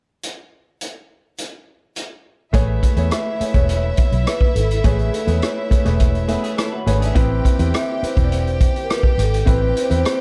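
Dark, warm small-room production gives this lush 1970s-style soul excerpt a vintage glow. A vintage drum kit opens alone with a punchy kick, hi-hat and rim click, its natural, rolled-off top sitting up front. At 2.5 seconds a round, foam-muted fingered electric bass joins up front, along with a smooth concert grand piano with deep bass and a clear, evenly bowed violin section carrying a second line with vibrato. From 3.1 seconds a mellow vibraphone, played with soft mallets and a fast motor vibrato, rings out the metallic melody over an Amaj9 chord that later moves to Cmaj7. At 6.3 seconds a bright, twangy electric guitar through a small old amp adds a brief, slightly broken-up picked riff in the background, coated in lush chorus.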